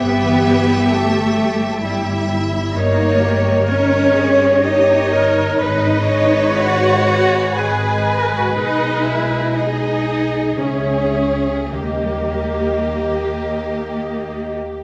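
A rich, up-front cello section carries the bass in this elegiac, melancholic slow romantic orchestral excerpt in rubato 3/4, beneath a lush violin section singing the melody with vibrato and portamento. Around it sit a darker violin section and a hollow flute section in the background, a distant clarinet, an expressive viola section accompaniment, very quiet mellow French horn chords, ringing fingerpicked harp arpeggios and a soft-attack double bass section, inside a wet concert hall reverb.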